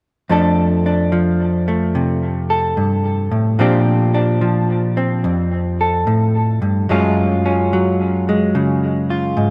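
Solo jazz in F major at a swung 73 BPM, this playful, sophisticated fragment from a longer piece features a dark, clean, picked electric hollow-body guitar sitting up front from 0.3 to 9.5 seconds, moving through F6, Bb69 and Gbmaj7sus2 chords with a subtle chorus and a diffuse ambient delay, all within a dreamy mix soaked in plate reverb.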